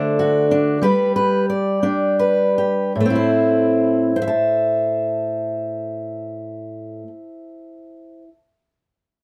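A fingerpicked steel-string acoustic guitar plays alone from the start, moving from D to G while slowing down over the first 3.0 seconds, then settling onto A minor for the second section. This short folk fragment in A dorian sits in a slow, straight 6/8 at roughly 50-65 BPM, intimate and melancholic in mood, with the guitar spanning A2 to A5. Close, detailed microphones place its warm auditorium-sized body up front, framed by light reverb.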